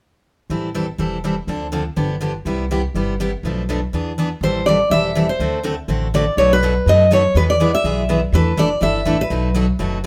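From 0.5 s, a warm, up-front picked steel-string acoustic guitar comps through Am7, Dm7, G7 and Cmaj7 over a woody, thumpy pizzicato upright bass with gut strings, setting up a swinging, bittersweet jazz manouche groove at 245 BPM in A minor with swung eighths; at 4.4 s a bright, full-bodied jumbo steel-string guitar takes the picked melody up front over changes moving through D7, B7 and E7sus4, all in a moderate studio reverb, until it stops at 9.5 s in this cut from a longer piece.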